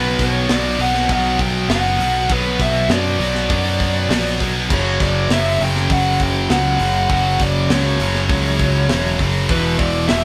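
A bluesy overdriven lead guitar carries the melody in this dark, relentless heavy metal passage, its distorted, picked tone sitting on the darker side as it moves between B4 and G5. Beneath it, a growly, punchy electric bass sits up front with a bright, direct edge. A pair of scooped high-gain guitars play the riff in the background, joined by a double-tracked heavy high-gain guitar that stays very quiet in the mix. A tight metal drum kit comes in at 0.2 s with crash, hi-hat, kick and a medium-tuned snare, its sound mid-forward with a rolled-off top. The harmony moves from Bm to F#5 at 4.7 seconds and E5 at 9.5 seconds, all captured as a band playing live in one room with a moderate stone-room reverb, in a cut from a longer piece.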